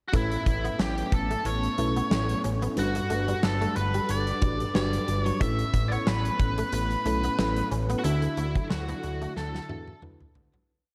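A biting, overdriven lead guitar sits up front with a motif-based melody in song-like phrases, its bright picked tone trailed by tape echo, in this short, complete 1980s-style pop piece in A mixolydian at 91 BPM with a light sixteenth-note swing. Beneath it, a fat, saturated analog bass drives steady eighth notes, while a huge arena drum kit delivers a punchy kick and a big backbeat on a fat snare. A mellow FM electric piano pushes close-voiced chords through chorus, its soft, round tone carrying a faint noise layer, and a vintage string machine of violas holds a slow-attack sawtooth pad with a moving notch in the background. A clean, direct-recorded electric guitar adds a muted, twangy single-note riff with ensemble chorus and tape echo, also set back in the mix. The chords move from Aadd9 to Gmaj7 and back before landing on Dadd9 at 8.0 seconds, where a fade-out begins and a drum fill arrives at 9.4 seconds. 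A lush hall reverb and a dark production give the whole a romantic, glossy mood.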